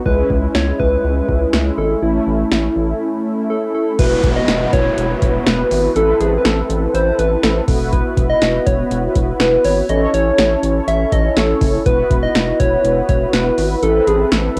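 A gentle, keys-like FM synth lead carries the melody from the first moment, its bright tone thickened with chorus and a cassette-tape tint. Beneath it, mellow, detuned sawtooth synth brass sits up front as accompaniment with chorus, vibrato and a filter sweep, while a round square-and-sine analog bass adds a dark filter pluck. An electro analog drum machine drives this wistful yet upbeat synth-pop at 122 BPM in a straight 4/4, with a deep kick, punchy snare, metallic hats and crash cymbal colored by tape. The harmony in E major moves from C#m and A to airy Esus2 and Amadd9 chords. A brief break arrives at 3.0 s, and a faint electronic downlifter sounds from 4.0 s to 7.9 s. Cut from a longer piece, it has the modest small-room ambience of a home cassette recording.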